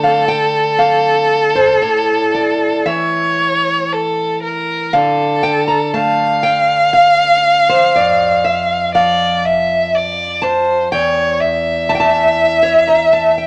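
A bowed violin and a fingerpicked nylon-string guitar begin together in this yearning, melancholic romantic duo in D minor, cut from a longer piece and tuned to A4 = 442 Hz. The violin carries the melody from A4 to F5 with a rich, focused tone and vibrato, a single player placed up front and sitting a little louder than the guitar. The guitar's fresh strings give its accompaniment a bright, small acoustic sound, ranging from E2 up to Bb5, with an audible finger squeak. The pulse is a slow 60 BPM in 3/4, but the beats are uneven and the phrasing pushes and pulls with rubato. The harmony moves from D5 to A at 1.8 seconds and settles on D minor at 4.9 seconds before the chords fall away at 8.0 seconds. Both instruments sit in a moderate studio reverb that lends the sound a touch of space.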